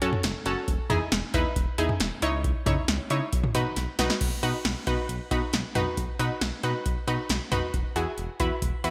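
Bright 1980s-style digital production with a moderate plate reverb frames this nostalgic, upbeat synth-pop excerpt, where an up-front electro analog drum machine with gated reverb, a deep kick, punchy snare, metallic hats, cowbell, crash and toms plays alongside a round, warbling analog pluck with chorus and a filter sweep over a smooth, dark sawtooth-and-triangle synth bass with vibrato, through chords moving from F#m to Eadd9 with a drum fill at 3.8 seconds.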